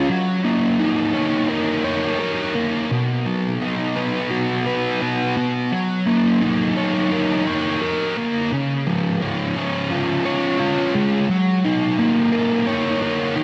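Rock at 86 BPM in F# major, hazy and blissful, with a lone fuzz guitar carrying the whole 13.4-second excerpt, cut from a longer piece. The double-tracked, picked electric guitar sits up front with a warm, distorted fuzz tone, colored by analog chorus and a diffuse ambient delay as it moves over chords of F#6, B and C#. A wet plate reverb soaks the dreamy mix.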